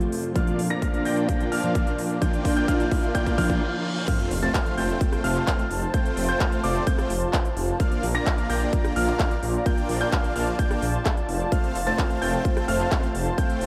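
A huge, airy supersaw riff in F major leads this uplifting, triumphant cut of festival progressive house at 129 BPM, pumping with sidechain alongside a punchy, up-front electronic kick, a crisp, overdriven big-room kit with handclaps, hats, rim clicks and crash, and a deep-toned grand piano spinning high arpeggios through delay. A fingerpicked dreadnought acoustic guitar sits in the background until 3.6 s, while a warbling vintage pad holds sustained chords and a very quiet riser and reverse cymbal sweep the build-up into the drop at 4.1 s. A thick, saturated detuned saw bass arrives at 4.3 s over the Bb and F chords, and a cathedral-sized reverb soaks the whole mix in a dreamy haze.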